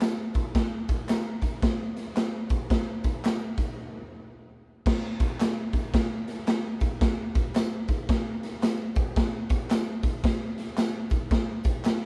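Recorded live in one room with light reverb, this joyful, uplifting soul excerpt runs at 112 BPM in 4/4 with a swung eighth-note feel. A raw garage drum kit sits up front, saturated and gritty with a rolled-off top, a boomy kick, a medium-tuned snare, hi-hat and crash cymbal, all set in a bright, pumping stone room. Behind it, close and dry handclaps and tambourine add a group handclap and tube shaker, and a short break from 3.8 to 4.9 s leads into a new section that carries on to the end.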